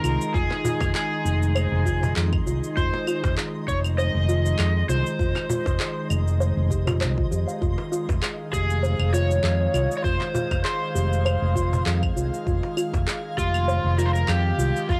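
An overdriven slide guitar carries the melody through tape echo and plate reverb in this hypnotic, warm organic downtempo excerpt in F minor at 99 BPM, with a lightly swung 16th-note feel resting on a single Fm7 chord. A round, punchy fretless electric bass sits up front with tube saturation and sidechain pumping, matched by a breathy, detuned pad with chorus and 12-bit sampler grit, while a soft, hollow-toned kalimba plays arpeggios through analog delay and a twinkling granular texture shimmers far in the background. Electronic claves, cabasa and handclaps run throughout, a deep electronic kick enters at 0.3 seconds, and a woody, band-limited cajon plays from 0.5 to 13.0 seconds, all within a lo-fi home cassette sound and light reverb.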